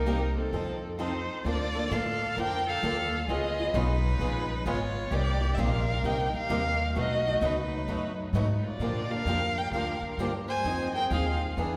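A single bowed violin carries the melody up front, expressive and warm-toned with vibrato and portamento, yet its voice has a slightly distant quality in the hall. This is a fiery, bittersweet piece of acoustic string swing in the jazz manouche style, moving at 130 BPM in 4/4 with a swung eighth-note feel. A second violin plays a smooth, even line in the background, and the upright bass sits prominently forward with a woody, dark, thumpy pizzicato on gut strings. Two picked acoustic guitars fill out the accompaniment: a bright, boxy swing-style guitar with fresh strings, and a parlour-sized steel-string guitar set further back, whose finger squeak can be heard as it joins at 0.1 s. After a brief opening over Cm7 and F7, the longer passage that starts at 1.5 s moves through Bbmaj7, C#9, Cm7, B13 and Bb6 before reaching Fm7. A reverberant concert-hall ambience surrounds the ensemble in this clip, which is cut from a longer performance and ends at 11.8 s.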